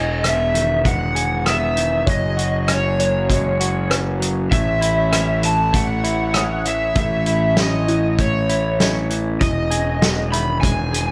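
A loose indie drum kit sets a straight 4/4 pulse at 98 BPM from 0.2 s, its hi-hat, kick, rim click and medium-tuned snare sitting up front with a rolled-off top, beside a fuzzed, picked electric bass in this hopeful, soaring post-rock excerpt. A semi-hollow electric guitar plays clean arpeggios with warbly pitch drift and slapback echo. A felt-muted upright piano adds dark, mellow arpeggios in the background, and a very quiet, swirling phased analog pad holds sustained chords. Over them, a bright overdriven slide guitar carries the melody with slapback echo as the harmony moves from Emaj7 through F#sus2 and A, returning to Emaj7 at 9.4 s.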